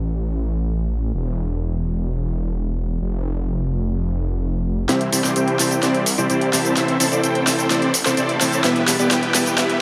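Festival progressive house with a euphoric, uplifting mood, cut from a longer piece. A lush, chorused detuned saw bass plays alone until 4.9 seconds, when a thick, compressed supersaw riff with tape echo and vibrato arrives up front alongside a layered big-room dance drum kit of hi-hat, shaker and an overdriven, huge snare. This second half is a build-up with a drum fill and a filter sweep on the supersaw, moving through C, Am and Em in light reverb.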